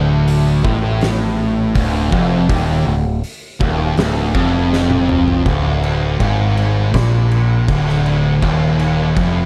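A bright, double-tracked distorted electric guitar, two dark fuzz guitars (one set in the background) and an up-front, overdriven picked bass open this ominous, hypnotic stoner-doom excerpt together, grinding out a riff on D minor at a crawling 81 BPM in straight 4/4. An oversized low-tuned drum kit joins at 0.3 seconds with a punchy kick, fat snare, dark cymbals and toms in a gritty, stone-room sound, and it plays a fill from 4.7 seconds. At 5.5 seconds the compressed distorted guitar drops out, leaving the fuzz guitars, bass and drums to carry a second section under light studio reverb and a dark production.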